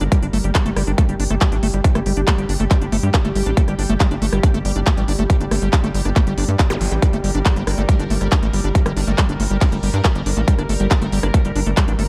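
Psychedelic trance at 139 BPM in G minor, this driving, intense excerpt from a longer piece holds a steady 4/4 groove with a dark, warm production and light digital reverb. A punchy, layered electronic kick sits up front, re-recorded in a large room, while a techno kit of handclaps, smooth hi-hats and rim clicks adds detail from a smaller space. Beneath it, a tight sequencer bass, saturated and mellow with a fast filter pluck and a ring-modulated sawtooth and square edge, drives the low end from G1 to G2. A squelchy, resonant liquid acid bass riff rides above with a sweeping filter, chorus, sidechain pumping and dub echo. A bubbling stepped-filter texture holds sustained chords, its random resonant steps softened by a slow attack, long release and built-in reverb. A brief electronic zap flickers in the background around 6.7 seconds.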